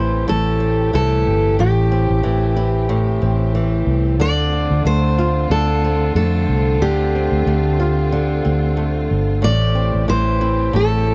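A dry, close 1970s-style studio sound frames this tender, wistful acoustic pop fragment, where a full-bodied fingerpicked steel-string guitar with fresh strings carries the melody up front over a dark flamenco guitar accompaniment with audible finger squeak, a round, foam-muted vintage electric bass sitting forward, and a distant, lush bowed string section holding sustained chords with vibrato and portamento as the harmony moves from Am7 to Dm7 at 4.2 seconds and back to Am7 at 9.4 seconds.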